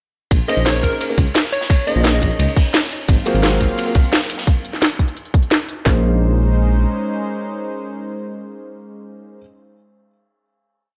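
Rolling and dreamy, this short liquid drum and bass piece opens straight into a drop in a straight four-beat feel. A deep, rumbling detuned saw bass sits up front with a dub-style line. Two tape-tinged garage kits layer a tight two-step kick, cracking snare, claps and crisp hats, blended with a gritty, saturated breakbeat loop that brings dark cymbals, edits and a rolled-off top until 4.5 seconds. A punchy square-wave unison lead with vibrato and digital delay adds catchy short phrases early on, over a soft, felt-muted upright piano playing syncopated chord stabs through its own delay. A smooth, chorused analog pad enters at 3.1 seconds as the harmony moves from Bbm11 to Ab13, and the drums stop near 5.9 seconds with the bass soon after, leaving piano and pad to hold a final Bbm11 chord in light small-room reverb.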